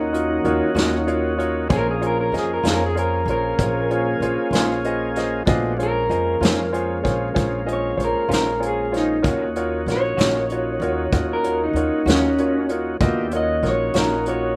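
A twangy, slightly broken-up electric guitar through a small old amp carries the melody of this mournful, smoky slow blues in Bb minor, its fingered lines treated with slapback echo. The tune moves at 64 BPM in a straight 12/8 feel, with the harmony shifting from Ebm7 to Bbm7 at 1.7 seconds and returning to Ebm7 at 9.2 seconds. A clear, natural grand piano, also given slapback echo, accompanies throughout and adds a brief fill at 0.8 seconds. Beneath it, a tonewheel organ holds smooth sustained chords with audible key click through a slowly turning rotary speaker, while a woody, dark upright bass is plucked in the low register. A vintage kit played with brushes sits up front, combining a punchy kick, a medium-tuned snare and hi-hat with a rolled-off top. Shortly after the start, a second guitar through a small old amp joins in the background, lo-fi and compressed, comping with harmonic tremolo, and the whole dry, intimate excerpt carries little reverb.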